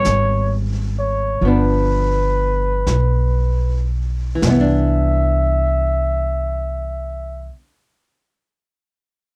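The recording is dry overall, though the brushed drums sit distant in a small, roomy space with a rolled-off top, while the woody, thumpy upright bass is placed up front. This is a romantic, late-night jazz ballad with a slow swing, cut from a longer piece, and it slows down through its first 4.4 seconds. A dark, breathy trumpet carries the melody as a soloist, with light vibrato and scooped notes, sounding both up front and roomy. The hollow-body archtop guitar adds clean, picked accompaniment in a shadowy tone, moving through a rootless A9 and G7 before resolving to Cmaj9 at 4.4 seconds. The pizzicato gut-string bass anchors the low end, and the warm vintage kit of brushed snare, hi-hat and toms drops out at 5.2 seconds, leaving the trumpet, guitar and bass to finish the passage.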